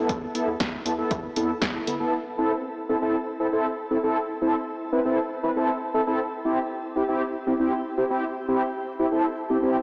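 Synth-pop with a nocturnal, cool mood, cut from a longer piece: mellow, brassy synth brass with detuned sawtooth tones, chorus and shimmer reverb sits up front across the whole 9.8 seconds. A punchy analog drum machine with tape-tinged kick, snare and hi-hat and a rubbery, hollow square bass with transformer saturation play only until about 2.1 seconds, when the chords move from Esus4 to A minor and then to C at 6.2 seconds. The recording is blown-out and overdriven, with a small-speaker sound and a wet concert hall reverb.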